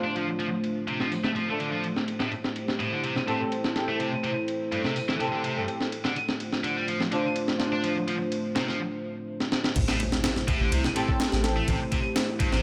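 A straight breakbeat groove from a compressed, sampler-style kit, with its thumpy kick and high-tuned snare up front, drives this gritty, energetic excerpt, while a scooped, high-gain electric guitar riff with distortion and tape echo grinds over a moody analog pad that pumps under sidechain and chorus. Distant bowed chamber strings add dark, vibrato-laden stabs until 7.8 s and return briefly at 11.0 s. After a short break and drum fill, the drop at 9.8 s brings in a rumbling, detuned saw bass and a background electronic impact, all within a light reverb.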